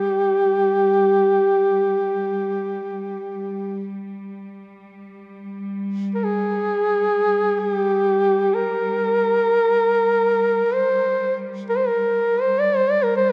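A mellow duduk sings a solemn, mournful Caucasian lament in free time over a distant chamber cello section that holds a clear, smooth, bowed drone on G3. The solo duduk sits up front, its folk-style line in G phrygian ranging from G4 to D5 and colored by vibrato and scooped notes, while the cellos stay even and soft beneath it with their own vibrato. A wet church reverb with a 3.8-second decay lends the fragment a spacious, sacred air, and both parts sound throughout its 13.3 seconds.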